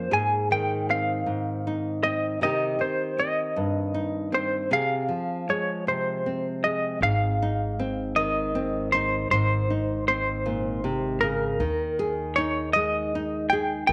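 A semi-hollow electric guitar and a nylon-string guitar open this intimate, reflective folk passage together, moving in an unhurried 6/8 over chords of Ab, Cm and Fm/C. The electric guitar carries the melody up front with a clean, compressed, hollow-body tone, fingered and colored by a tremolo effect. Beneath it, the classical nylon-string guitar is fingerpicked close to the listener, with audible finger squeak adding to its intimacy. At 7.0 seconds, a pizzicato upright bass with steel strings enters at a lower level, its woody, growly, thumpy sound grounding the second section as the harmony returns to Ab and then settles on Ebsus4. A moderate echo chamber reverb gives the warm studio sound a gentle sense of space, and the recording is a cut from a longer piece.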